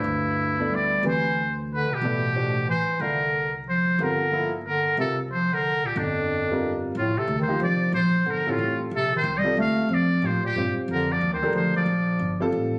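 Modal jazz in a swinging triple metre, open and searching in mood, heard as a short cut from a longer piece. A metal-muted trumpet carries the melody up front, its tone buzzy, thin and breathy with a soft attack and a whispered, intimate, vintage quality, set in plate reverb. Beneath it a mellow, close-miked bass clarinet plays a second line with vibrato, while a clear grand piano with short sustain accompanies and a woody pizzicato upright bass on steel strings holds the low end. The harmony drifts through suspended chords before settling onto a major-ninth sound as a new section begins at 7.0 seconds. The trumpet and bass clarinet stop at 12.4 seconds, leaving piano and bass to ring out briefly. The sound is that of a phone recording in a club, with moderate room reverb and compression.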